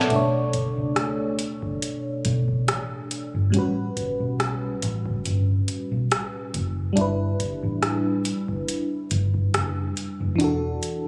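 A mellow FM electric piano, soft and round with chorus, phaser and tremolo, opens this moody, sensual contemporary R&B excerpt up front alongside a dark, foam-muted vintage fingered bass and a booming analog drum machine with a deep kick, tonal snare, rim click and metallic hats. The slow, lightly swung groove moves through Bm9, A13 and G6 before settling on E9sus4 at 10.4 seconds, where the kick drops out. Captured on a phone in the room, the sound carries a light club reverb.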